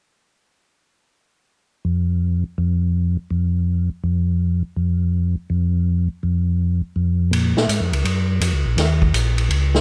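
Swinging at 165 BPM in 4/4, this bluesy, late-night soul jazz organ trio fragment in Bb minor opens with a mellow, round, dark tonewheel organ carrying the bass line from 1.8 seconds through a chorus vibrato and slow rotary speaker, and an acoustic big-band drum kit with a punchy kick, medium-tuned snare, hi-hat and ride cymbal joins it at 7.3 seconds as the harmony settles on Bbm7 and moves to Eb7, all captured close and dry with little reverb.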